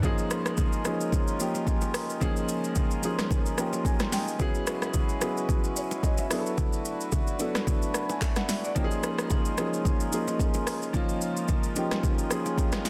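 Soulful amapiano with a lightly swung sixteenth feel, where a dark, mellow, boxy grand piano sits up front with long sustain over suspended ninth chords and plays a fill from 3.3 to 4.4 seconds, a reedy, breathing pedal harmonium holds sidechain-pumped chords beneath, an overdriven, layered electronic deep house kit punches forward with deep kick, handclaps, hi-hat, rim click, shaker and snare, and very quiet congas and bongos ring close and dry under light reverb in a dense, heavily limited modern master.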